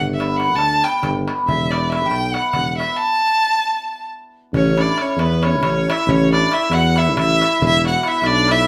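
Exuberant and festive, this Balkan folk excerpt has the spirit of a wedding band, racing at 274 BPM in eighths through a straight 7/8 in A mixolydian. Up front, a single bowed violin carries the melody with a clear, focused tone and vibrato, though it sits at a slight distance in the room. A mellow, smooth-topped tuba anchors the bass in a classical style, while a hammered cimbalom fills in the accompaniment with a shimmering, ringing sound. In the background, a small, high metal-shell darbuka adds crisp, compressed and saturated percussion. At 4.6 seconds, as the music moves into a new section over an A chord, a roomy clarinet joins with a second line in a classical manner. The band plays live together in one room, bathed in a wet studio reverb, and the passage moves through G, Em and a brief chordless stretch before returning to Em near the end.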